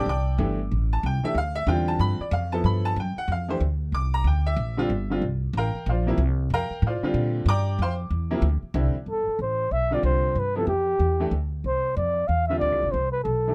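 Swung eighths drive this modal jazz in 4/4 at 186 BPM, open and spiritual in mood, as a bright, brilliant upright piano with short sustain comps through G9sus4 and C9sus4 beside a woody, pizzicato upright bass with steel strings, both up front. At 9.1 seconds the harmony settles on G7sus4 and a trumpet in a bucket mute enters with the solo melody, dark and veiled, breathy with soft attacks, scooped notes and vibrato, sounding close and intimate, almost whispered. The dry, detailed recording is cut from a longer piece.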